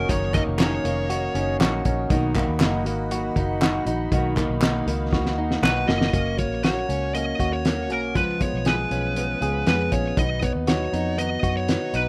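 A straight 4/4 pulse at 119 BPM carries this breezy, nostalgic jangly indie pop piece in F# major, where a muffled, cloth-damped drum kit with a fat snare and tight kick sits up front with a round, foam-muted fingered bass, bright clean electric guitar arpeggios and a full-bodied fingerpicked jumbo acoustic in the background, while group handclaps and a swirling, detuned analog pad with phaser and chorus color the opening half, and a fuzz-distorted lead guitar melody flickers briefly at the start before returning at 5.6 seconds over a drum fill that leads into the second section at 6.1 seconds, all in a dry, rough home-demo mix.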